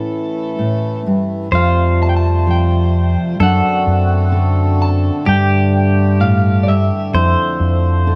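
This short acoustic folk-pop ballad, cut from a longer piece, opens with a fingerpicked steel-string guitar with fresh strings and an audible finger squeak, joined from the start by a clean, compressed pedal steel guitar playing a second line with fingerpicks, slide and volume swells. Alongside them a hand-pumped harmonium holds reedy, breathing chords in a boxy small-room sound. At 1.5 seconds a dark, round fingered electric bass arrives up front, and at 1.6 seconds the melody enters on an electric guitar through a small old amp, slightly broken-up, lo-fi and shimmering with tremolo. The slow, straight pulse moves through chords such as Fadd9, D7/F#, Gsus2 and Dmadd9/F, and light reverb gives the intimate, heartbroken mood a gentle sense of space.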